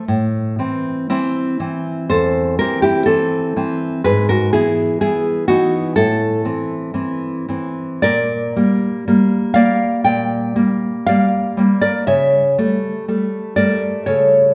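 The recording places a close, full-bodied nylon-string guitar up front inside a reverberant recital hall, its 1.4-second decay blooming around each note as though heard in a church or concert hall. This short excerpt from a longer romantic piece for solo classical guitar moves at a slow 60 BPM in 4/4, played with a free, rubato feel that lets phrases breathe. The fingerpicked instrument spans from a deep E2 in the bass to G5 at the top, giving the sound a rich, rounded depth. Its harmony begins in A minor, passes through E/G# and back to A minor at 6.0 seconds, then darkens with a turn to Gm/Bb before closing on A7/C# at 12.1 seconds. The mood is intimate and melancholic, like a private reflection voiced in a resonant space.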